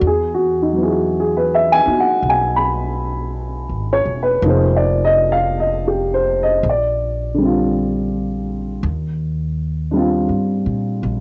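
A tender, intimate jazz ballad fragment at a slow 54 BPM in swung 4/4, where a dark, mellow, boxy upright piano with a cassette-tape character plays accompaniment over chords moving from Eadd9 through Fm7 and Bbadd9 to Eb69, while a thumpy, woody pizzicato upright bass with steel strings sits up front beneath it, all in a light studio reverb that gives the home cassette recording a close, private feel.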